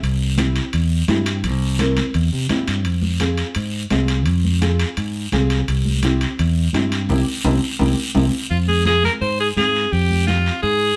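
Passionate and fiery, this short cumbia cut from a longer piece moves at a brisk 170 BPM in straight 4/4, centred on F harmonic minor. A growly, punchy fingered electric bass sits up front, bright and direct, while raspy guiro and ringing metal-shell timbales sound close and dry, and thick-skinned, high-tuned congas played with soft hands stay in the background. A dark, thumb-plucked nylon-string guitar supplies small-sounding accompaniment over chords moving from C7 to Fm to C. Around 7.1 seconds the band hits a shared accent, with a drum fill and a guitar fill leading into a new section at 8.5 seconds, where an edgy, forceful alto saxophone takes the lead with vibrato on the Fm chord. The group plays live together in one room, wrapped in moderate studio reverb.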